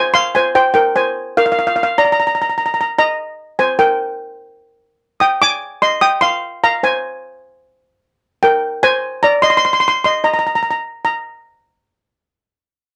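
A straight, even 4/4 calypso pulse drives this bouncy, festive fragment cut from a longer piece, carried by a lone lead steel pan played with medium rubber sticks. The pan sits up front with a metallic, shimmering tone, tuned slightly flat of standard pitch and moving through Fm, Bb, Eb and Ab chords before the harmony drops out at 9.4 seconds. Close, detailed microphones and light reverb keep the sound intimate, and the pan stops at 11.2 seconds, just after a brief new section begins at 11.1 seconds.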